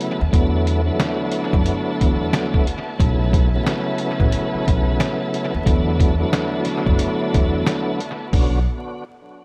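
Boom-bap hip-hop at 90 BPM in B minor, tough and gritty with a swung 16th feel, where a muffled, pitched-down sampler-style drum kit with a thumpy kick and analog delay sits up front beside a tonewheel organ carrying key click, chorus vibrato, fast rotary speaker and cassette tape colour over E9sus4 and B9sus4 chords, while a woody pizzicato upright bass enters at 0.2 seconds and a distant, lush bowed string section holds sustained chords in an echo-heavy small-room mix dusted with vinyl crackle, settling on Bm at 8.3 seconds.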